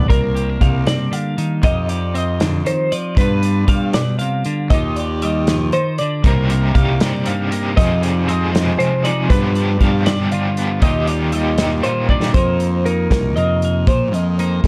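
Two twelve-string electric guitars open this restless, wistful cut of math rock and midwest emo in 6/8 at 78 BPM: a bright, twangy chordal part and an up-front picked arpeggio line with subtle chorus, joined by a fuzzy, overdriven fingered bass and a loose small-room drum kit with a tight kick and rolled-off top. At 6.2 seconds a crunchy, double-tracked overdriven guitar riff with tremolo enters over extended minor and major-ninth chords such as Cm11, Fm9 and Ebmaj9. A drum fill at 12.1 seconds leads into a brief new section on F7sus4 at 12.3 seconds, all in a dark, dry production.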